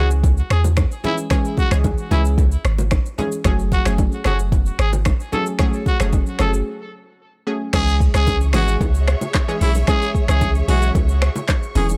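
Hypnotic and sultry, this afrobeats excerpt moves at 112 BPM in a straight 4/4, set in C# minor and cut from a longer piece. A raspy, growling trumpet carries the solo melody with light vibrato and a digital delay, while a round, vintage analog pluck with chorus and filter sweeps supplies the accompaniment. Underneath, a deep sine sub bass with a pitch-drop attack sits up front beside an electronic afro-pop kit of deep kick, metallic hi-hats, rim clicks, finger snaps, handclaps, shaker and crash cymbal, with saturated, hard-handed congas and bongos in the background. The harmony moves from C#m to F#madd9 before a break at 6.7 seconds. At 7.7 seconds the chords return to C#m as a bowed studio string section enters with expressive portamento and a smooth top. The mix is dry, with little reverb.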